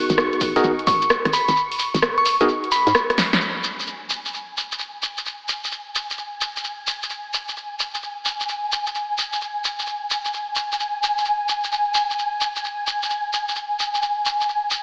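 Silky, phased string-machine chords and worn, dub-echoed electric piano stabs open this moody, late-night two-step UK garage excerpt, joined at 0.1 s by a hollow, knocking FM bass, a punchy analog drum machine with filtered hats and snare and a grainy shekere, with a brief electronic kick drum arriving at 0.4 s, while a glassy, chorused synth bell carries the melody through a drum fill at 3.2 s until 3.4 s, after which the pumping strings sustain under a filter sweep beside the shekere until 14.8 s, inside a lush hall reverb with vinyl crackle and an AM-radio tint.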